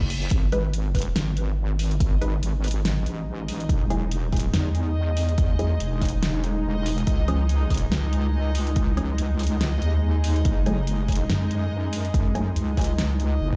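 A heavy, saturated wobble bass with chorus sits up front in this deep dubstep excerpt at 142 BPM with a half-time feel, its detuned square-and-sine tone resonant and compressed over a layered electronic kick and a house kit with fat snare and hi-hat, both tape-warm. Muted, dark sawtooth chord stabs run through phaser and dub echo from 0.5 seconds, and a blurred, evolving granular cloud pad enters at 1.6 seconds. A reversed, dreamy texture swells in the background from 2.2 seconds as the chords move from G#5 through E and C#5 to F#sus2, giving a meditative mood set in the stone-room reverb of a big sound system in a bare space.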